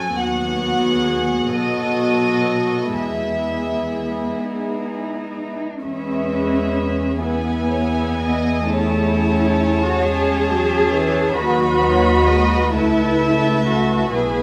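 Tender and serene, this slow, rubato romantic movement for string orchestra in E major drifts at about 40-45 BPM in 6/8, with two violin sections carrying a pure, floating sul tasto melody and second line over intimate, lightly vibrato violas and dark, woody cellos, while a smooth-topped double bass section joins at 5.8 s, the strings set in a concert hall reverb in this short passage cut from a longer piece.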